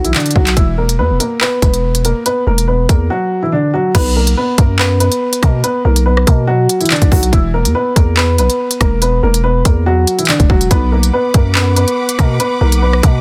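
A dark, woody upright piano with audible action noise and a slightly detuned, intimate tone opens this ominous half-time drill cut together with a growling, buzzy 808-style bass and an up-front electronic drum kit of hard-clipped kick, crisp hi-hats, handclaps, rim clicks and crash. The drums drop out briefly from 3.1 to 3.9 seconds before returning for the second section. At 10.7 seconds a lush, bowed symphonic string section enters quietly with soft-attack sustained chords and expressive vibrato, all within a dry, dense and heavily limited mix.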